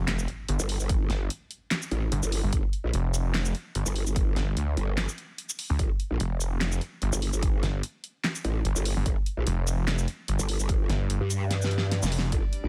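Heavy wobble dubstep in G minor at 147 BPM with a half-time, lightly swung feel, this menacing, chaotic excerpt pairs a snarling distorted saw bass with an overdriven, chorused growl bass with formant-filtered wobble, drives them over a punchy electronic kick and a big-room dance kit of handclaps, hi-hat, shaker and huge snare, opens with a very quiet electronic impact, runs a drum fill from 11.5 to 12.3 seconds, and closes as a warm, soft-attack, sidechain-pumped bowed string section enters at 12.3 seconds, all in a dry mix.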